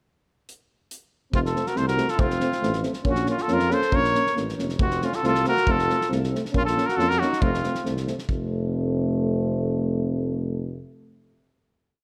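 A clear cornet with light vibrato sits up front, carrying a motif-based melody of song-like phrases through this short, complete Balkan brass band piece at 138 BPM in 2/4, its mood virtuosic and restless over chords moving between F and Bb minor. A mellow flugelhorn follows mostly in thirds from a distant, roomy spot, while two euphoniums, one warm and one close-miked with a soft attack, pulse out lines of the group's chords in the background, and a mellow tuba plays root-and-fifth bass on the main beats. A loose indie drum kit with a punchy kick and medium-tuned snare opens with a pickup bar at 0.5 seconds and stops around 8.5 seconds, leaving the low brass to hold the final chord until 10.8 seconds under light reverb.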